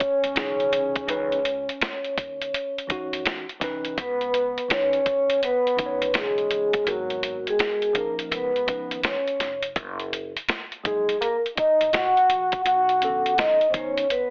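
Jazz-hop at 83 BPM in C# minor, a smoky, nocturnal groove with a swung 16th feel, cut from a longer piece and heard through a heavily compressed radio and telephone sound in a wet studio reverb. A ringing, band-limited vibraphone with soft mallets and slow motor vibrato carries the melody over a dark, breathy trombone second line, while a gritty, pitched-down boom bap drum kit with a thumpy kick and high-tuned snare sits up front. A woody pizzicato upright bass and a worn, slightly out-of-tune tine electric piano join at 0.2 and 0.3 seconds, moving from C#m9 through G#m9, C#9 and F#69 to B9.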